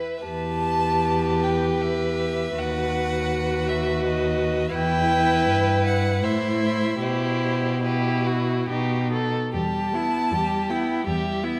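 Classical chamber music for string quartet, this slow romantic movement in 3/4 unfolds with a yearning, elegiac mood and flexible rubato, a fragment drawn from a longer piece. A single violin carries the smooth, rich melody with vibrato above a second violin's warm supporting line, while a clear, close viola enters at 0.2 s with bowed accompaniment. Beneath them a focused cello anchors the bass, and the quartet sits in a moderate scoring-stage reverb as the harmony moves through minor chords toward a dominant and back home.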